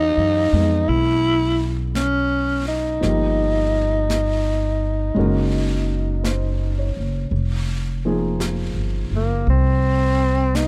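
A breathy, growling tenor saxophone carries the tender, romantic melody up front with subtone, vibrato and scooped notes over a warm grand piano, whose action noise is audible, and a woody, thumpy pizzicato upright bass, with a brushed drum kit and its high-tuned snare joining softly at 0.9 seconds in this slow 56 BPM swung jazz ballad excerpt, moving through Emaj9, Ebadd9/G, Gb69 and Fm7 in a dry, close 1970s-style studio sound.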